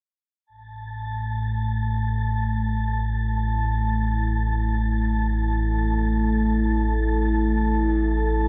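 Ominous and vast, this free-time ambient excerpt opens with an airy, wind-like tuned noise texture at 0.5 seconds, joined by a deep rumbling drone with lush chorus at 0.7 seconds and a moody, detuned analog pad sustaining chords from 1.5 seconds, all sitting in a huge ambient reverb within a dark, warm production, with the piece tuned to A4 = 437 Hz.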